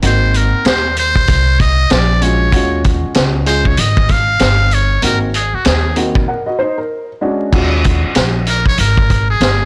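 A swung sixteenth-note groove at 96 BPM in 4/4 drives this cool, mellow jazz-hop cut from a longer hip hop piece in Eb dorian. The vintage drum kit sits up front with a tight kick, a high-tuned snare, hi-hat and crash, its dark cymbals and rolled-off top giving the kit a soft edge. The pizzicato upright bass sounds woody and thumpy, its steel strings pushed through tube saturation. A worn, slightly detuned upright piano with audible action noise plays the accompaniment over Ab9, Bb7alt and Ebm11 chords and stops at 8.4 seconds. Above them, a close-miked trumpet with a metal mute carries a buzzy, thin, brilliant jazz solo with breathy tone and light vibrato, and a short break arrives at 6.3 seconds. The whole mix is blown-out and overdriven in a small room ambience, with vinyl crackle running underneath.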